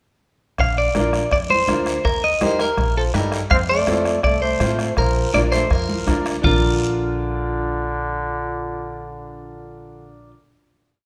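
A bright, clean electric guitar sits up front from 0.6 seconds, picking a compressed, motif-based melody of short call phrases bathed in spring reverb. This joyful, festive cumbia moves at 164 BPM in a straight 4/4 in B-flat major, with the chords stepping from Bb to Eb, F and back to Bb. Underneath, a thumpy pizzicato upright bass plays a woody cumbia figure. A soft-beater bombo drives kick and rim strokes, a raspy guiro scrapes a long-short-short pattern, and high-tuned, band-limited congas play off-beat patterns in the background. A clear, vintage-sounding upright piano adds rhythmic triad chords with long sustain, and from 3.0 seconds a distant trombone joins with a scooped harmony line mostly in thirds. The percussion drops out at 6.5 seconds, leaving guitar, bass, piano and trombone to ring out on a final chord in a moderate large studio reverb.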